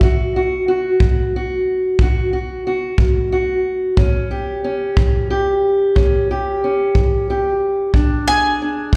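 A brief round, double-strung mandolin note with slapback echo opens this laid-back, gritty acoustic country blues fragment at 0.0 over a dark, boxy parlour-style fingerpicked steel-string guitar and a punchy, brushed kick drum, moving in a slow 12/8 at 61 BPM in A mixolydian. The up-front guitar carries the harmony from D to A7 to E7 while the up-front kick plays along, and the picked mandolin falls away after 0.3 seconds before returning at 8.3 seconds. It sounds like a live gig heard through a venue's PA, with small-room ambience and recital-hall reverb.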